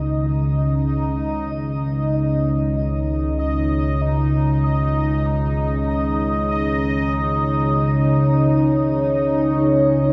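Floating in free time, this dark ambient drone feels unsettling and cavernous, a short passage cut from a longer piece. An analog drone anchors the low register from the very start, its sawtooth and pulse-wave tone warbling and evolving with pulse-width modulation, mellow and vintage in character, and sitting up front in the mix with chorus. Also from the opening, a bubbling stepped-filter texture drifts higher up, its resonant sawtooth jumping through random filter steps, washed in chorus, its own reverb and a shimmer reverb. At 0.6 s a dark analog pad enters with deep, moody sustained chords built from sawtooth and triangle waves with a sub octave, colored by chorus, phaser and shimmer reverb. The whole sound is steeped in a huge ambient reverb with an 8.4-second decay, giving the slow-attack layers a cavernous sense of space.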